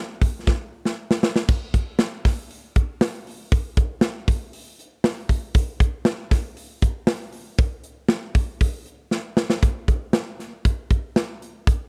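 A big acoustic rock drum kit comes in at 0.2 seconds and almost at once plays a fill, setting a restless, bittersweet indie pop mood at 118 BPM in a straight 4/4. The kit sits up front, with a punchy kick, a medium-tuned snare, bright cymbals, hi-hat and crashes, all carrying the sound of a big room. A second fill, from 9.1 to 9.6 seconds, leads into a new section, and the drums play on until 11.8 seconds. The recording is dry and close, in a 1970s studio style with very little reverb. This short clip is cut from a longer piece.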